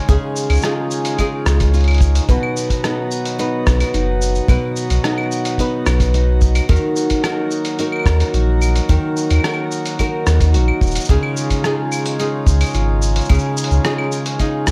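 A straight 4/4 groove at 109 BPM is driven by a punchy acoustic kick played with bundle sticks and a muffled, tape-warm sampler-style kit of claves, hi-hat, rim click and shaker, giving this pastoral folktronica excerpt in Db mixolydian a gentle pulse. A round, deep sine sub bass sits up front, while a fingerpicked flamenco guitar spins arpeggios through tape echo over a reedy, breathing pedal harmonium holding sustained chords. The mix is dry, moving from Dbadd9 through Cb and Ebm before returning to Dbadd9 at 11.1 seconds.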